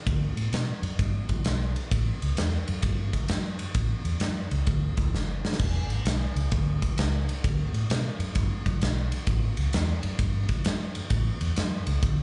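A big rock drum kit sits up front, its fat snare and punchy kick ringing in a bright stone room, with crash and ride cymbals over the top. Underneath, a vintage muted fingered electric bass gives a dark, round, foam-muted tone through an amp, holding the low end from 0.1 seconds to the close at 12.2 seconds. The music is gritty, driving blues rock in the power trio mould with a southern rock lean, set to a swung 4/4 feel. A drum fill breaks through between 5.1 and 5.6 seconds before the groove carries on. It sounds like a live gig heard through the venue's PA, with a touch of club reverb and a dulled top end. This is a short cut from a longer piece.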